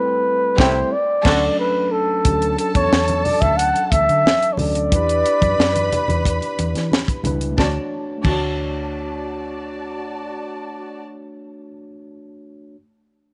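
Heard in a small room with a softly rolled-off top, this lush 1970s-style soul excerpt sets a breathy, whispered flugelhorn melody up front over a mellow tine electric piano with tube saturation, dark, woody bowed strings, a clear horn-section stab in the background at 0.6 seconds, a round, foam-muted electric bass, a tight, dry funk drum kit with bright cymbals, and very quiet low-tuned congas that enter at 2.2 seconds.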